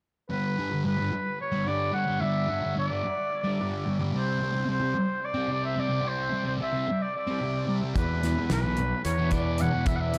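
Trippy and hypnotic, this psychedelic rock fragment in 7/8 at 220 BPM (eighths) floats a clear, distant oboe melody with light vibrato and dub echo over a thick, double-tracked fuzz guitar riff with distortion, phaser and echo moving from G to Csus2, until a round, punchy overdriven fingered bass and a dry, damped 70s drum kit with fat snare and tight kick join at 8.0 seconds on an E5 chord, all within an echo-heavy mix with light reverb that runs to 10.2 seconds.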